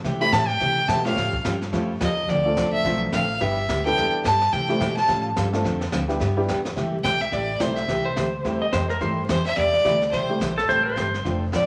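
Vinyl crackle and a moderate large-studio reverb frame this playful, down-home western swing snippet, which is cut from a longer piece and driven by a swung beat from a brushed jazz kit with a high-tuned snare and boomy kick. An up-front fiddle with light vibrato and a biting, airy bow takes the solo through the opening section, over a bright, full-bodied picked acoustic guitar, a dark, mellow upright piano and a woody, thumpy pizzicato upright bass. At 8.1 seconds, a clean electric lap steel played with slide and fingerpicks joins as a second line near the end.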